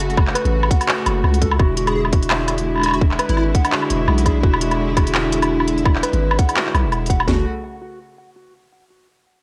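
Half-time drum and bass at 169 BPM in F# minor, this dark, tense cut from a longer piece drops straight in with an overdriven kit of tight kick, cracking snare and toms, layered over a second up-front kit of handclaps, crisp hats and woodblock, all under a swung half-time feel. A deep, sine-like 808-style bass and bowed strings with soft attack and light vibrato hold long tones across F#m and E7, the strings pumping against the sidechain. A clean, compressed electric guitar fingers arpeggios through sampler grit, tape and analog delay, while a bright, detuned square-wave lead with chorus sits in the background for a brief catchy phrase between 1.9 and 3.4 seconds, and the whole mix carries the character of a home cassette recording.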